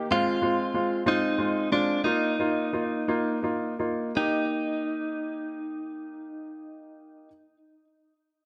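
Pop in a swaying 6/8 at 53-63 BPM in E-flat major, this heartfelt fragment cut from a longer piece pairs a clear, deep-bassed concert grand piano playing up-front accompaniment with a bright, scooped, clean electric guitar recorded direct and carrying the melody through tape echo, as the tempo slows over the first 4.2 seconds while the harmony moves from Fm to Bbsus4 before settling on Eb in a small room with light reverb.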